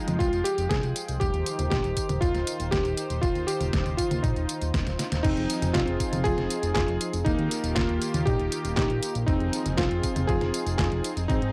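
Italo disco in F minor at 119 BPM, this melodramatic, bittersweet 11.5-second excerpt sets a clangy electric grand piano melody with tape echo over a smooth, chorused analog pad, a fat, wave-folded sawtooth bass with a filter sweep, a thumpy overdriven electronic kick and an overdriven, detuned 8-bit drum machine of snare, hi-hat, handclaps, tambourine, toms and crash, with a drum fill at 4.9 seconds leading into a shift from Fmadd9 and Cm/Eb to Fm7 and Ebadd9, all captured dry on cassette.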